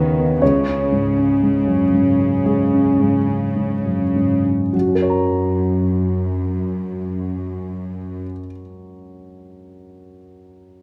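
Freely paced in a rubato 4/4 that slows over the first 4.7 seconds around 50-62 BPM, this uplifting, moving cinematic fragment in F# major sets a concert grand piano with deep bass and long sustain as accompaniment from C#2 to A#5 against a bowed cello section carrying the bass, intimate and sul tasto with light vibrato and soft attack, which drops out at 8.2 seconds while the piano rings on to 10.8 seconds in a moderate scoring-stage reverb.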